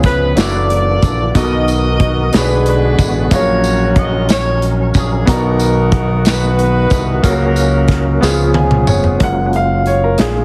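A slow gospel groove in 6/8 at 61 BPM opens at once with the full band: a clear baby grand piano comping, a fat, lightly overdriven tonewheel organ holding sustained chords in the background through a slow rotary speaker with key click and chorus vibrato, a bright, punchy fingered electric bass up front, and an acoustic studio drum kit with a punchy kick, medium-tuned snare and pumping room sound. Almost immediately a mellow, tight saxophone section takes the melody, sounding distant and roomy with light vibrato and a touch of tape echo, while a jingly, band-limited vintage tambourine joins at 0.4 seconds. In F# major, the harmony moves from an altered F#7 through Bmaj7, Bm6 and F#maj7/A# before settling toward C#7, giving the passage a hopeful, uplifting lift. At 8.2 seconds the horns finish their line as the drums and piano play fills together, and from 9.2 seconds the piano steps forward with a solo over an F#maj7 chord until the cut ends. 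The whole mix sits in light reverb with a heavily compressed, radio-style sheen.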